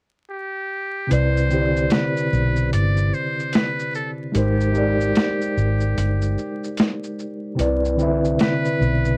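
A trumpet with a metal mute opens this dreamy, cosy lo-fi hip hop excerpt at 0.3 s, playing a buzzy, thin jazz-style solo line between G4 and D5, softened by a low-pass filter. At 1.1 s the rest of the band arrives at a relaxed 74 BPM in 4/4 with a swung sixteenth-note feel. A mellow tine electric piano, clean and heard through its built-in speakers, supplies filtered chords, moving from Cmaj9 to Abmaj9 at 4.3 s and then back to Cmaj9. Beneath it, a vintage muted fingered electric bass sits up front with a dark, round, punchy tone. The sampler-style boom bap drums are compressed, pitched down and gritty, with hi-hat, shaker and a high-tuned snare. The whole track carries light reverb, the worn feel of old cassette tape with warbly pitch drift, and a bed of vinyl crackle.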